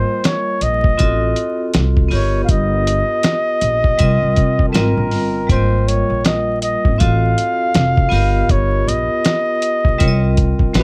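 A breathy, whispered flugelhorn carries the melody over ringing hard-mallet vibraphone chords in this cool, smooth jazz-hop excerpt at 80 BPM in Ab major, with a gritty, thumpy sampler-style drum kit entering at 0.2 seconds and woody pizzicato upright bass joining at 0.6 seconds, all wrapped in dark production with vinyl crackle.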